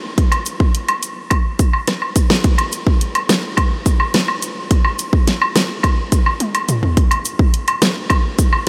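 Tough and sultry, this dancehall fragment in a straight 4/4 is carried by a punchy, layered electronic pop drum kit that sits up front, with a fat snare alongside hi-hat, rim click and toms, entering at 0.2 s. An acoustic woodblock and cabasa part, heard as maracas and a group handclap in a small room, joins just after and sits lower in the balance. A drum fill from 6.4 s leads into a new section at 7.0 s, and the whole dreamy mix is soaked in a huge ambient reverb.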